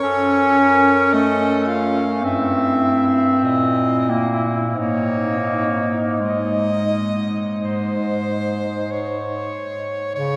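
Serene and unhurried, this short fragment of a lyrical classical piece for a single-reed quartet drifts at 42-55 BPM in a rubato 4/4. A bright, close-miked soprano saxophone carries the melody with light vibrato, while the alto saxophone adds a vibrato-tinged second line in the background. Up front, the clarinet's clear, soft-attacked accompaniment ends at 8.9 seconds, and a vintage-toned bass clarinet holds the low line through 10.4 seconds, all suspended in a long cathedral reverb as the harmony settles from Absus4 onto Ab.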